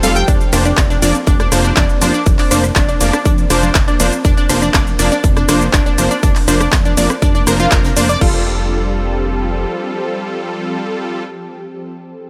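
A dry, tight mix carries this expansive, uplifting progressive house excerpt in F major at 121 BPM, with every synth part breathing to sidechain pumping. It opens at full tilt in a drop that runs to 8.2 seconds, where a punchy, overdriven electronic kick sits up front from 0.3 seconds, joined by an overdriven deep house kit of handclaps, hi-hat, ride, crash, rim click and shaker. A faint acoustic brush kit of hi-hat and snare sits beneath, and very quiet, dry electronic congas with rim click add texture. A plucky, funky analog bass holds F1, while an airy supersaw stab with digital delay and a cassette-tape tint punches chords over a round, detuned analog pluck whose bright arpeggios reach as high as G6 through chorus and delay. Behind it all, a dark, ethereal pad with an octave-up shimmer, phaser and its own reverb sustains the Bbadd9/F harmony. The drums and pluck drop away after about 8 seconds, and the bass follows at about 9.7 seconds, leaving the pad and stabs resting on Fadd9.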